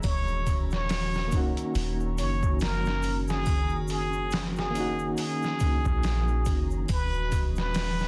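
A forceful, plunger-muted trumpet with vibrato carries the solo melody of this cinematic, hypnotic trip hop excerpt at 70 BPM in Eb Phrygian, over a gritty, pitched-down sampler drum kit with a thumpy kick, a round, dark 808-style bass, a warbling, nostalgic tape-like pad, a faint egg shaker and triangle, and a barely audible flickering granular texture, while a reedy, overdriven electric piano with tremolo and 12-bit grit plays from 1.3 to 6.9 s, where the harmony shifts from Ebm7 to Eadd9/Eb, all under dense limiting and vinyl crackle.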